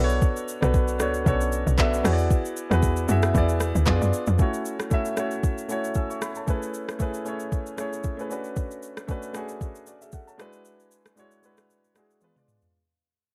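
A dark, warm production with light reverb gives this late-night amapiano fragment a deep, close feel, cut from a longer piece. It opens on a drop, where a tight log drum bass hits with a punchy, percussive FM attack and a noise layer, decaying quickly under an up-front concert grand piano with a rich low end. The electronic R&B-style drum kit carries a soft kick, metallic hats, handclaps, rim clicks, shaker and toms, all roughened by overdrive and placed well forward, with a gentle sixteenth-note swing. The log drum drops out at 4.4 seconds as the track begins to fade, leaving piano and drums to move through lush minor and ninth chords such as F#m7, Amaj9, Bm9 and E9. A brief drum fill at 12.2 seconds plays over a diminished chord just before the fragment ends.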